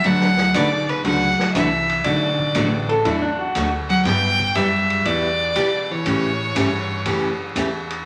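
A clear, intense fiddle carries the melody up front in this cheerful, down-home western swing excerpt, its bowed line boxy and touched with light vibrato. Beneath it, a hollow-body jazz guitar plays a dark, clean second line with the fingers, while a bright, full-bodied acoustic dreadnought is picked as accompaniment. A vintage drum kit with dark cymbals and a punchy kick swings the 4/4 at 120 BPM, joined by a woody, thumpy pizzicato upright bass on steel strings. From 2.9 to 3.7 seconds a clean lap steel guitar steps up front with a brief compressed slide phrase shaped by volume swells. The changes move from D69 through Bm7 and G6 to A7, and the whole sits in a wet, large studio reverb with a layer of vinyl crackle.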